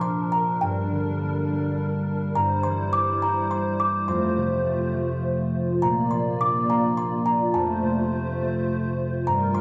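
Innocent and tender, this children's lullaby sways in 3/4 at 104 BPM, its delicate, tinkling music box melody sitting up front, slightly out of tune and airy, over a concert harp whose thumb-plucked accompaniment rings warmly. A hollow, flute-like soft pad with a vintage, warbling character and an ensemble chorus holds sustained chords alongside them, all three parts playing throughout this 9.6-second cut from a longer piece. A moderate echo chamber reverb gives the whole a gentle sense of space as the chords drift from Bb through Gm, C/G and F.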